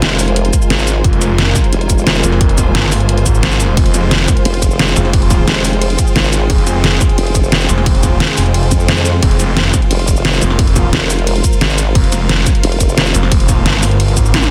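Driven by a punchy, layered electronic kick from 0.5 seconds and an up-front dubstep kit of hi-hat, ride, shaker, toms and a deep snare, this excerpt of dark, futuristic technical drum and bass runs at 176 BPM in straight 4/4, in F minor over an Fmadd9 chord, and ends on a drum fill at 14.3 seconds. A snarling, distorted saw bass growls low and aggressive from 1.0 seconds, pumping to the sidechain, while a chorused formant-sweep wobble bass drops out between 2.2 and 4.5 seconds. Behind them, a deep, moody ambient pad with slow attack and built-in reverb holds sustained chords, and a lush, bowed string section with vibrato adds a bright, intense layer, both pumping in the background of a dense, heavily limited, fairly dry mix.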